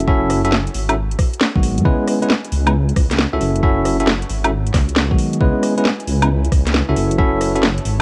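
Dry cassette sound frames this bouncy, late-night two-step UK garage cut from a longer piece, swinging at 135 BPM in C# minor, where bell-like tine electric piano stabs with tape echo cycle through F#m7, G#m7 and C#m7 over a dark, detuned saw bass pumping from the sidechain, a knocking electronic kick, a garage kit of cracking snare, metallic hats, rim click and woodblock, and a very quiet, warbling, nostalgic pad that enters at 0.1 seconds.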